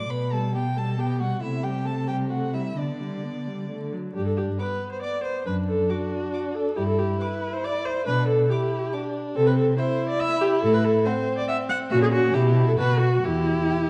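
Cheerful and graceful, this quick classical-period movement for string quartet moves in 3/4 at 129-143 BPM with a rubato feel, beginning in G major and turning toward E minor from 9.4 s in this short section of a longer piece. The first violin carries the melody high in its range, bowed with smooth, even vibrato and a rich tone, though it sits lower in level than its partners. The second violin plays a second line beneath it, rich and close, while the viola supplies accompaniment up front with a warm, expressive sound marked by vibrato and portamento. The cello anchors the bass, also up front, its tone focused with a smooth top. A recital hall reverb with a 1.6-second tail surrounds the group, and the dark production carries a vinyl crackle.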